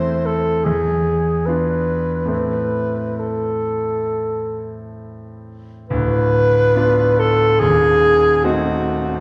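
Played in a flexible rubato at around 65-74 BPM in 4/4, this short passage cut from a longer piece of romantic classical chamber music sits in A minor with an elegiac, yearning mood. An alto saxophone carries the melody in a classical style, its tone mellow with light vibrato, a soft attack and a smooth top, and it sits up front as the solo voice throughout the 9.2 seconds. A concert grand piano supplies the accompaniment beneath it, brilliant in tone with deep bass, an open sound and long sustain. The harmony settles from A minor over E through a tense E7b9 back to A minor, then shifts at 5.9 seconds into a darker stretch of diminished chords. A wet recital hall reverb with a 1.6-second decay surrounds the duo, heard from further back in the room.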